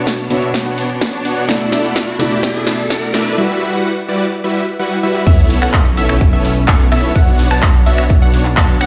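Festival progressive house at 127 BPM in 4/4, emotional and euphoric, this short cut builds over a dark, mellow concert grand piano that plays accompaniment until 3.4 s, veiled con sordino strings sustaining chords in the background, huge detuned supersaw chords carrying the riff up front through a low-pass filter with sidechain pumping, and a very quiet riser and sub drop, while a punchy, layered kick and big-room kit with snare, claps, finger snaps, hi-hat and crash drive a drum fill in the first part of the build-up. At 5.3 s the drop hits with an impact as a thick, saturated detuned saw bass with chorus and a lush unison pluck playing arpeggios in the background enter. The harmony, having moved from Bmadd9 through Dsus2/B and Emadd9, lands on Aadd9/B at the drop before returning to Bmadd9. Tape echo trails the piano, supersaws and pluck, and the whole mix sounds as if played on a big sound system in a bare stone room.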